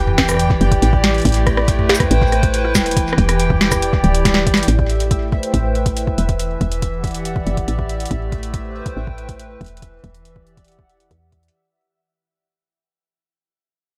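Glitchy and cerebral, this IDM excerpt at 140 BPM in A minor sets a hollow, flute-like pad holding chorused chords with shimmer reverb over a woody, round FM bass warmed by tube saturation, while a pulsing gated texture with chorus and shimmer sits in the background. A booming analog drum machine, overdriven and up front with crisp snare, metallic hats, cabasa, rim click and toms treated with delay, is soon joined by a soft, overdriven electronic kick drum. A drum fill at 4.3 seconds leads into a fade-out from 4.7 seconds as the harmony moves between Em9 and Am9.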